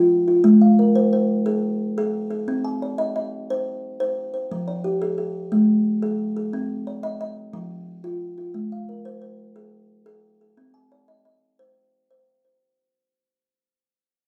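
A rolling 12/8 lilt at 118 beats per minute, counted in dotted quarters with a straight feel, carries this short southern African traditional passage cut from a longer piece. A lone kalimba plays arpeggios from start to finish, its woody, hollow-box tone and soft fingertip plucks giving each short note a mellow, airy quality as it sits up front. The harmony circles through Ab, Cm and Fm, with brief chordless moments at 5.5 and 7.5 seconds before the Ab and Cm return. The instrument is tuned to A4 = 441 Hz and ranges from F3 up to Ab5+43c. A moderate, large studio reverb surrounds the playing with a live-room sense of space, and the whole passage fades out across its roughly 12.6 seconds, leaving a warm, hypnotic impression.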